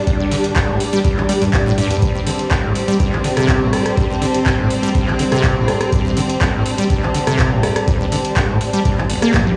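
Played through a big sound system in a bare room and washed in large studio reverb, this raw, hypnotic acid house excerpt sets a squelchy, resonant sawtooth acid bass riff up front, thickened by tube saturation, analog chorus and tape echo. A clear, lush bowed string section holds sustained chords with vibrato, while a bright, blurred granular pad drifts above with its own reverb, both pumping against the sidechain. A deep, tape-warm electronic kick drives the straight groove alongside a booming analog drum machine of handclaps, metallic hats, rim clicks and toms, and a drum fill arrives at 9.3 seconds.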